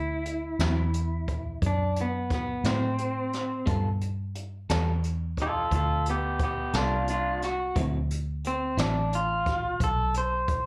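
A swaggering, rollicking slow blues in a straight 12/8 at 59 BPM, tuned slightly flat at A4 = 437 Hz, moves between D9 and G9 chords across this short cut. A picked, lo-fi lead guitar through a small old amp plays a clean, slightly broken-up solo with slapback echo throughout, over a dark, round, foam-muted fingered bass and brushed drums with a boomy kick and a high-tuned snare. A second compressed guitar adds tremolo-laced accompaniment with its own slapback from 0.6 to 9.0 seconds, all heard as a live gig through the venue's PA with light club reverb.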